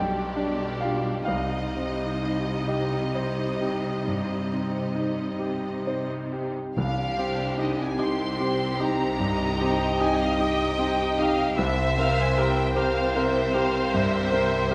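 A clear, up-front concert grand piano with a deep bass sings a tragic, passionate romantic melody in a rubato 12/8, joined from the start by smooth, vibrato-laden violins also carrying the tune, richly expressive second violins, close and lush violas, and a smooth background cello line, before bowed double basses with a gentle attack and a brief hard-mallet timpani passage enter at 6.8 s, the harmony moving from G7/B to C minor and turning to C7 at 11.6 s, all within the moderate bloom of a scoring-stage hall in this fragment of a longer movement.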